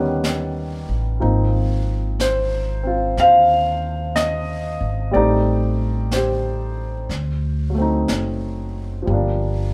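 A late-night, romantic mood settles over this slow jazz ballad, moving at 61 BPM in 4/4 with a gentle swung eighth-note feel. An upright piano carries the accompaniment from the start, its tone polished and present, sitting up front in the mix across a span from Eb3 to F5. Beside it, a plucked upright bass with steel strings gives a woody, close-up low end. A brush drum kit joins at 0.2 s with brushed snare and hi-hat, its high-tuned snare sounding like it sits in a small room, softer than the other two. The harmony drifts from Ebaug7 into a lingering Ab69, then turns through Am7b5 and D7b9 before landing on Gm7. The whole trio plays together live in one room with a moist, short studio reverb, in a brief passage of just under ten seconds cut from a longer piece.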